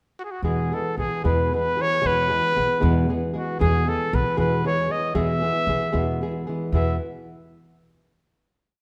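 Festive and proud, this short mariachi piece in a rubato 6/8 opens with a clear, soft-attacked trumpet pickup at 0.2 seconds, carrying a motif-based classical melody up front while a fingerpicked and strummed nylon-string guitar with finger squeak and open chord shapes joins at 0.4 seconds alongside a woody, thumpy pizzicato upright bass playing root and fifth on the main beats, all settling onto a final E chord in a moderate recital-hall reverb.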